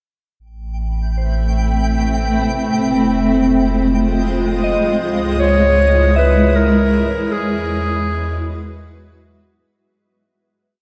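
A slow, straight 3/4 pulse at 78 BPM carries this short, complete ambient piece, spacious and serene, set in a vast, echoing cathedral-like space with a dark top end. A deep, round sub bass holds sustained roots from 0.4 s, while a granular cloud pad, blurred, detuned and full-bodied, sits up front with slowly shifting chords that move from Amadd9 through Fm7 and C#madd9 to Eadd9. A twinkling granular texture adds a bright, sparkling octave-up shimmer on a held high note, and a soft FM synth bell scatters gentle, warbling arpeggio notes in the background through chorus, phaser and tape echo, fading in across the piece. At 5.4 s a clear, distant clarinet enters up front in a classical style, playing a solo motif of call phrases with tape echo. The synth texture fades across the whole piece, and the full mix fades out from 6.6 s to its close.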